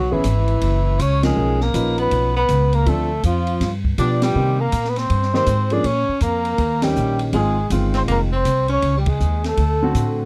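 Relaxed and swinging, this short small-group swing and bop jazz clip sets a veiled, breathy cup-muted trumpet on the melody over a clear, smooth-topped tenor saxophone second line, with a woody, growly upright bass up front, polished grand piano accompaniment and an acoustic drum kit with dark cymbals, a high-tuned snare and a boomy kick, the band punching shared accents at moments such as 1.2, 4.2 and 6.8 seconds in a dry, close 1970s-style studio sound.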